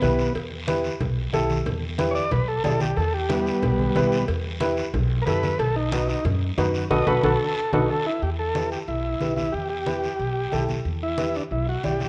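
Cumbia in E minor at a driving 183 BPM in straight 4/4, this danceable excerpt from a longer piece is led by a vintage, reedy combo organ with heavy vibrato, placed clean and up front as it takes a solo through the opening section over Em and then B7 chords. A dark, mellow upright piano, slightly detuned, supplies accompaniment beneath it, while a thumpy pizzicato upright bass with steel strings and a woody tone anchors the low end. Bright, low-tuned congas with a thin skin, a raspy guiro heard close and dry, and ringing metal-shell cowbell and timbales sitting in the background fill out the percussion, with the cowbell and timbales stopping at 7.8 seconds. A band accent and a drum fill lead into a new section at 8.2 seconds, where the harmony returns to Em. The whole recording carries the worn, warbling pitch drift of old cassette tape, a dulled top end, and a moderate large-studio reverb.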